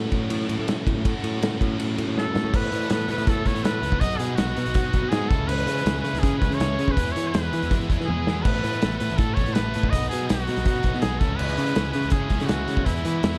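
Dark production with light reverb frames this jangly, wistful stretch of indie rock at 162 BPM. Two background guitars, one biting and overdriven and the other scooped and high-gain with subtle chorus, ride over a bright, direct picked bass and an up-front, loose acoustic kit with a tight kick and a pumping small-room sound. Alongside a drum fill at 2.2 seconds, a punchy vintage trumpet with vibrato, scooped notes and plate reverb takes the solo melody. A very quiet, smooth sawtooth pad with a soft attack joins at 2.5 seconds, and the chords cycle through Asus2, B, C#m7 and E, with a second drum fill at 8.1 seconds.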